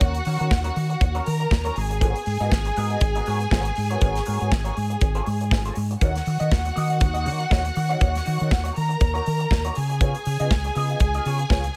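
Sultry and danceable, this disco excerpt in Eb minor moves at 120 BPM with a light 16th-note swing, as a punchy kick, medium-tuned snare and hi-hat from an airy, polished drum kit sit up front beside a dark, round fingered electric bass, while a compressed, slightly broken-up picked electric guitar with wah comps through Ebm7, Abm11 and Db7 and a lush, bowed violin section with vibrato carries a smooth second line over small room ambience.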